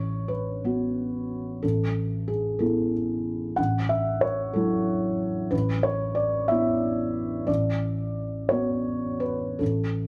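A felt-muted upright piano plays alone through this short neoclassical minimalist fragment, its thick felt giving each note a soft, mellow, dark tone while the audible action noise keeps it intimate and close up front. The piece moves in a rubato 6/8 at about 61 beats per minute counted in dotted quarters, and the mood is tender and hopeful. Its harmony drifts gently over an A in the bass, moving from B5/A to Asus2, then F#m7/A, back to Asus2, and on to Bm/A near 7.5 seconds. The piano spans from the low A1 up to F#5, and light reverb surrounds it. Lasting just over 10 seconds, this cut from a longer piece feels like a quiet, open-ended moment of reflection.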